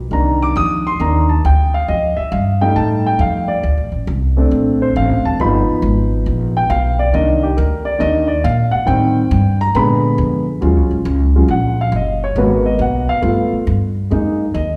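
This short cut from a longer big band swing performance sounds as if heard from further back in a recital hall, with a wet reverb tail and a faint mains hum beneath the players. The pace is a brisk 138 BPM in 4/4 with a strong swing on the eighth notes, and the mood is swinging and sultry. An upright piano sits up front and takes the solo from the start, its tone polished and present while it also supplies the harmony. Beneath it a pizzicato upright bass on steel strings sounds thumpy and woody, also close at hand, moving through rich extended chords such as Cm9, Bbmaj9 and a G7alt. At 10.6 seconds the harmony settles into Eb minor with an Ebm11, and the piano carries on soloing over Abm7 and G9 before landing on a Gb69 as the passage ends at 14.8 seconds.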